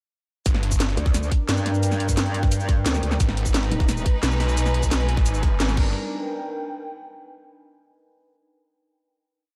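A snarling, detuned saw bass growls up front in chopped, distorted phrases through this tense, futuristic dark technical drum and bass piece at 175 BPM, while a metallic, chorused FM wobble bass adds its own aggressive, modulated phrases in the first half. A tight electronic kick, a layered kit with cracking snare, metallic hats, shaker and crash, and a very quiet, gritty, pitched-up jungle breakbeat loop drive the drop, which lands a band accent at 5.6 seconds as the harmony moves from G minor to A-flat minor and back. An airy, breathy pad with chorus and sidechain pumping holds slowly shifting chords and rings on alone through the final note to 7.3 seconds, joined midway by a bright, biting symphonic string section, with light reverb around the mix.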